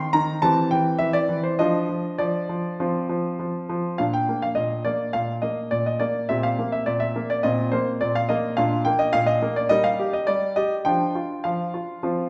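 The rhythm moves in a flexible 4/4 at around 104 BPM, the pulse stretching and relaxing with a gentle rubato. This elegant, graceful classical-period sonatina in B-flat major is heard as a short passage cut from a longer piece, with the tuning set slightly low at A4 = 439 Hz. A solo grand piano carries the whole performance, sounding clear and smooth with a vintage character and a short sustain, placed up front in the mix across a range from Bb2 to C6. The opening phrase passes through C/E, Dm/F and F5 before a new section arrives at 4.0 seconds on a B-flat chord. From there the harmony visits C5/Bb and F5/Bb, returns to B-flat, then turns through Eb/G to a closing Dmadd11/F at 10.9 seconds. The instrument sits in a wet recital hall reverb with a 1.6-second decay, giving the refined lines a sense of space.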